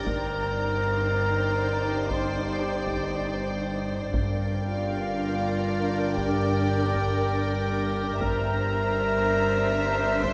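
A wet concert hall with a 2.2-second reverb wraps this eerie, ominous suspense cue, a short cut from a longer film score moving at a slow 59 BPM in 4/4 over Cmadd9/G, Gm and Cadd9/G. Strings bowed sul tasto carry most of the weight: a soft, floating symphonic violin section holds the melody in the background, while a dark, intimate studio violin section with light vibrato traces a second line above it. A present, classical-style solo clarinet shares that second line, and a lush, woody viola section fills the middle as accompaniment. Underneath, a clear cello section and a dark double bass section anchor the bass on G, joined by a metallic, inharmonic FM drone that warbles with chorus in the background. An icy, crystalline glass pad sustains chords with chorus and its own reverb, a faint high violin texture floats softly on top, and a close, dry taiko ensemble struck with heavy sticks enters at 0.1 seconds in the background.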